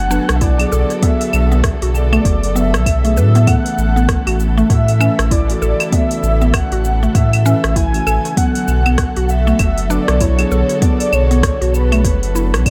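Earthy and mystical, this organic downtempo excerpt moves at 98 BPM in B minor with a lightly swung sixteenth feel, drifting from Bm7 to A and back to Bm7 in an echo-heavy mix. A breathy, flute-like synth lead carries the melody with vibrato and shimmer reverb over muted, felt-like synth keys, a dark, lush bowed string section and woody, warbling mallet-like synth plucks spinning arpeggios through dub echo. Underneath, a round sub bass sits up front with sidechain pumping, while an afro-pop kit of claves, metallic hi-hat, rim click and shaker is joined by a deep electronic kick that enters at 0.4 seconds.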